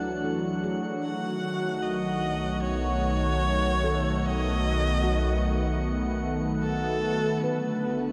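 Weightless, warm ambient music in a vast, echoing space, where a bright, amplified electric violin with vibrato and portamento fades in over the first 7.4 seconds, carried by a smooth, detuned analog pad with chorus and shimmer reverb, a glassy drifting harmonics texture, very quiet ringing handpan arpeggios from 0.2 seconds, and a deep, ominous rumbling drone with phaser that enters at 2.2 seconds.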